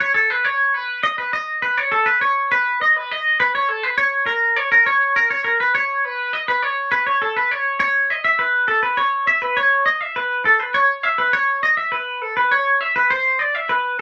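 A light reverb surrounds a short, playful and wistful rock passage in 6/8 at 68 BPM, set in A lydian and cut from a longer piece. A solo electric guitar sits up front with a twangy, bright, clean tone, picked and compressed under a lush chorus, its line ranging from A4 to E5. The opening idea gives way to a new section at 7.8 seconds, carrying on to the close at 14.0 seconds.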